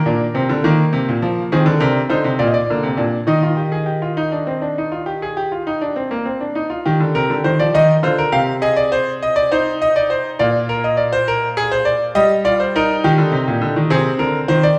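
A bright concert grand piano opens alone, outside any chord, before the harmony settles onto Ab, Bb and Eb within the first few seconds. This is a classical, baroque-style three-part fugue in Eb major, taken at a stately 68 beats per minute in a straight 12/8. The mood is elegant and stately. The piano sounds brilliant and natural, sitting up front with a deep bass and a range reaching from Bb2 to F5. At 6.9 seconds a second section begins, moving through Cmadd9, Bb and Eb/G before closing on Ab/C, as though cut from a longer piece. A wet recital hall reverb with a 1.5-second decay surrounds the instrument and gives the counterpoint a spacious, resonant setting.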